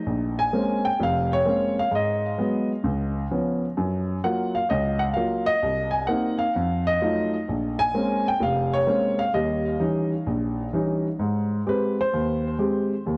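A dark, warm production places a solo grand piano up front in a small room with light reverb, its smooth, vintage tone touched by tape echo. This short cut from a longer solo jazz piece swings in a relaxed 4/4 at 129 BPM in Ab major, with the piano spanning F1 to Ab5 across a progression of Bbm9, Abm7, Db7, Gbmaj7, Cm7b5, F7b9 and Eb7b9. At 11.2 seconds the harmony resolves to Abmaj7 as a new section begins, the piano carrying on alone until 13.2 seconds.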